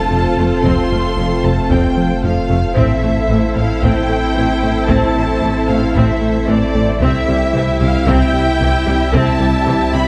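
Lush, vibrato-rich violins carry the melody over a second violin line in the background, smooth-topped violas, very quiet bowed cellos and double basses, a mellow French horn section holding chords, a moody chorused ambient pad, a thick saturated sub bass, a glossy retro synth bass riff and very quiet hard-stick taiko in this relentless, vast hybrid orchestral and electronic film score fragment, which moves from F to A minor to C inside a scoring-stage reverb.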